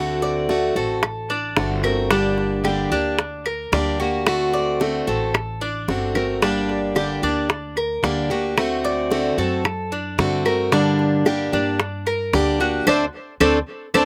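A bright, metallic Cuban tres with double strings and slapback echo plays up-front arpeggios over a picked plugged-in steel-string acoustic guitar with audible finger squeak, a dark, thumpy pizzicato upright bass on gut strings, tight high-tuned bongos from 0.2 seconds and woody claves in the background from 1.0 seconds, in this danceable, warm 111 BPM Cuban son and guajira excerpt in G harmonic minor that moves between D7 and Gm, with a drum fill at 5.9 seconds and a band accent landing on D5 at 12.9 seconds in a dry outdoor recording.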